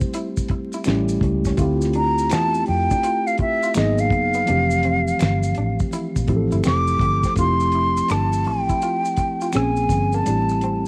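This excerpt from a longer neo-soul R&B piece opens with a mellow tine electric piano comping in F major, alongside a cloth-damped drum kit whose fat snare, tight kick, rim clicks, hi-hat and finger snaps sit dark and dry at a laid-back 83 BPM with a swung sixteenth feel. Soft maracas and snaps add a live-room touch, while an electric guitar through a small old amp plays a slightly broken-up, compressed second line in the background, and a round, foam-muted electric bass joins at 0.9 seconds. At 2.0 seconds a breathy silver concert flute steps up front with a close-miked, hollow tone and vibrato, carrying a smooth solo melody until 7.4 seconds, when the music moves into a new section. The harmony drifts through lush chords such as Dm11, Abm9 and Fmaj9 before settling back on Am7. The piano, drums, guitar and flute carry a cassette-tape character, and the whole recording has light small-room reverb and vinyl crackle for a cozy, homemade mood.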